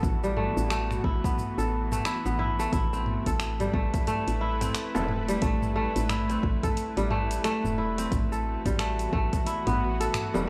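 Mystical and warm, this organic downtempo excerpt moves at 89 BPM in A dorian with a swung sixteenth feel, as a crisp, ringing kora plays fingerpicked arpeggios up front over a nasal, string-like bowed drone shimmering with reverb and a round, woody FM bass, both breathing with sidechain pumping. An overdriven electronic kick drives the groove until 9.4 seconds alongside a produced afro-pop kit of finger snaps, metallic hats, shaker and toms. A deep, distant frame drum sounds at 4.9 and 10.3 seconds, and the chords shift from Em to Am7 and back in a gritty, dry recording with small-room ambience.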